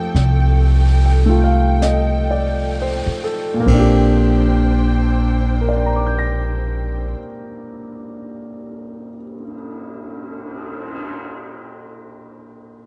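Intimate and romantic, this slow jazz ballad fragment in Bb major swings gently at 30-38 BPM, easing its pace over the opening 3.7 seconds as an F9 settles onto Bb69, with a clear, deep-voiced concert grand piano up front beside a woody pizzicato upright bass and lush, bowed symphonic strings with soft attack and vibrato, while a brush kit with dark cymbals, a high-tuned snare and a boomy kick sits quietly in the mix; strings and bass drop out at 7.1 seconds, leaving piano and brushes in a dry, dark production.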